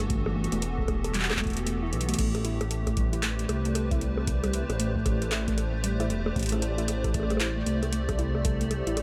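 A hollow, flute-like pad with ensemble chorus holds sustained chords to open this melancholic, cerebral IDM passage, joined at once by warbly, lo-fi pluck arpeggios with chorus and tape echo, an up-front rumbling detuned saw bass, and a booming analog drum machine of bongos, handclaps, crash cymbal and metallic hats with its own tape echo, while a deep electronic kick sits in the background from 0.1 seconds, a drum fill lands at 1.9 seconds, and the harmony shifts from Emadd9 to Am11 at 2.2 seconds, all set in light digital ambience.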